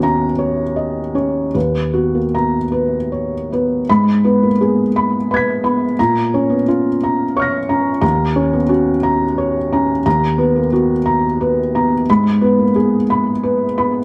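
A felt-muted upright piano plays alone in this melancholic, intimate neoclassical minimalist fragment, cut from a longer piece, its soft, boxy tone sitting up front with audible action noise and a slapback echo. The rubato phrasing moves in 6/8 through dark minor harmonies, from Ebm7 to Abm and Bbm and back to Ebm7, then a brief lift at Bmaj7/D# around 10.1 seconds before settling back on Abm. Light reverb and a dark production keep the mellow sound close and private.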